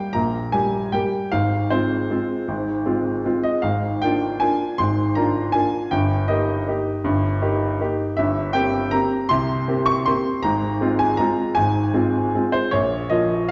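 A solo upright piano opens the recording, playing a classical waltz in 3/4 at 157 BPM with a loose, rubato feel. The instrument sounds woody and vintage, with a clear, smooth tone and short sustain, and it sits up front. It ranges from G1 up to Db6. The harmony begins in Eb major, moving through chords such as Fm/Ab, Bb7/Ab and Eb/G, then turns toward F minor at 8.2 s by way of C7/G before settling on Bbm. The mood is bittersweet and nostalgic. The piano rings out in a wet, reverberant church or concert hall, and the 13.5-second passage is cut from a longer piece.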